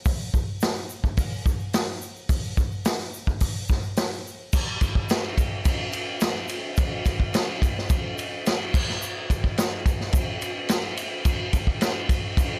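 A straight 4/4 rock groove at 107 BPM runs from 0.1 s to 12.5 s in this confident, sunny fragment of a longer piece, with a shift into a new section at 4.5 s. A vintage acoustic drum kit sits up front in a natural studio room, pairing a punchy kick and medium-tuned snare with dark crash, ride and hi-hat cymbals under a rolled-off top. A very quiet tube shaker adds a grainy, bright texture, close and dry, and the overall sound carries little reverb.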